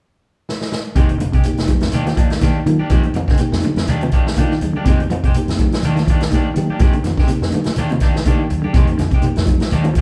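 A swung sixteenth-note afrobeat groove at 123 BPM in 4/4 opens with a drum fill on the up-front vintage kit at 0.5 seconds, its punchy kick and medium-tuned snare driving an intense, defiant vamp in F dorian that alternates Fm9 and Ebmaj7. From 1.0 seconds a round, foam-muted fingered bass, dark hollow-body guitar arpeggios, twangy, slightly broken-up guitar stabs and a grainy shekere join, with ringing, high-tuned congas just after, while a reedy electric piano comps in the background and adds a short fill at 4.1 seconds. The band plays live together in a large studio with moderate reverb, in a passage cut from a longer piece.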